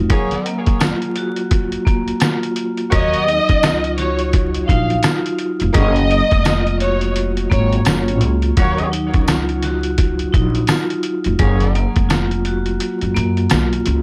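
Boom-bap hip-hop at 85 BPM with a swung sixteenth-note feel, this short cut from a longer piece has a reflective, dark mood, set in a small, dry room with gritty hardware grain and vinyl crackle. A compressed, pitched-down sampler-style drum kit sits up front with a thumpy kick, medium-tuned snare, rim click and hi-hat, while a jingly tambourine rides close and dry in the background. A woody pizzicato upright bass anchors the low end, and a vibraphone struck with hard mallets rings out metallic and airy with fast motor vibrato, filtered at both ends, over chords alternating between Gbmaj9 and Ebm9. From 2.9 to 7.7 seconds a lush, bowed violin section carries the melody with expressive vibrato and analog delay, sounding distant yet up front, while a punchy horn section adds filtered, delayed stabs from the opening until 11.9 seconds. The kick drops out at 12.8 seconds, leaving the remaining drums, tambourine, bass and vibraphone to close the passage.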